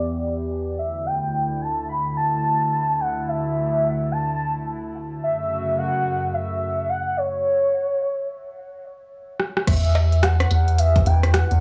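IDM with a cerebral, eerie mood, this short cut from a longer piece moves at a swung 4/4 pulse over changing chords that start on Em and shift through Dsus2 and F#m. A velvety, detuned synth lead carries the melody from the start, its mellow tone colored by chorus, tape echo and vibrato, while a hollow, flute-like pad holds sustained chords beneath it with a slow attack and its own chorus. A filter sweep runs through the opening stretch, and a drum fill at 9.4 seconds brings in an organic electronic kit of cowbell, crash, smooth hi-hats and rim click. At 9.7 seconds the music returns to Em as a rubbery, bouncy square bass arrives, dark and up front with tube saturation and a resonant filter pluck, joined by a deep electronic kick. The sound is dry and gritty, with a cassette-tape haze, a low-pass dullness and a hint of studio ambience.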